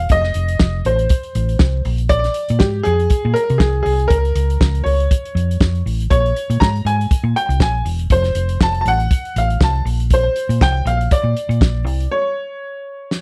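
Riding lightly swung sixteenths in 4/4, this danceable, glamorous disco excerpt pairs a soul drum kit with a fat snare, tight kick and rolled-off top in a pumping room, a dark, round, punchy hollow-body short-scale electric bass, and a smooth vintage grand piano whose short-sustained melody carries a slapback echo, all dry and up front over chords moving from F7 through Bb9, Db6 and Bbm7, until the bass drops out at 12.1 seconds for a brief break of drums and piano.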